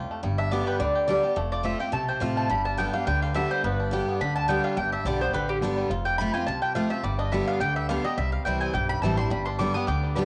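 A swung, fast 4/4 drives this lively, joyful bluegrass excerpt, with a thumpy, gut-strung upright bass and an up-front, full-bodied dreadnought guitar, its finger squeaks audible, picking out accompaniment over G, F and C chords, while a twangy fingerpicked banjo carries the melody. The mandolin comes in at 0.4 s with round, double-string stabs that form the solo, and a nasal, metallic slide line from the lap resonator guitar appears briefly from 0.8 to 1.4 s. Spring reverb, a small room and a muffled cassette sound on the banjo, guitar, mandolin and resonator give it a homemade, lo-fi charm.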